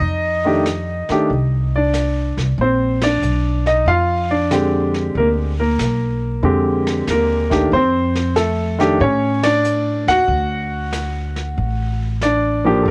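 Jazz piano trio in F mixolydian at 93 BPM with a 68% eighth-note swing, sophisticated and relaxed, where a clear, intimate grand piano with audible action noise carries the melody up front over woody pizzicato upright bass and a dark, rolled-off vintage brush kit of snare, hi-hat, kick and ride cymbal, set in small-room ambience, with band accents at 2.9 and 9.3 seconds as the chords move from F7 through Bb13 and F6 to D in this excerpt from a longer piece.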